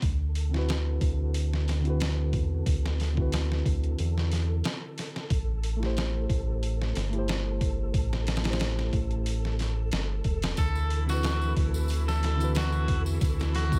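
A lightly swung trip hop groove opens this brooding, cinematic excerpt, with a gritty, pitched-down sampler drum kit, overdriven and up front with a thumpy kick, joined by a round, deep analog bass thickened by tube saturation. A reedy electric piano with tremolo, 12-bit sampler grit and tape echo carries the chords over a flickering, grainy texture sitting far back in its own reverb. At 10.6 seconds a twangy, slightly broken-up electric guitar melody with tape echo arrives alongside a clear, biting studio string section and a faint tambourine.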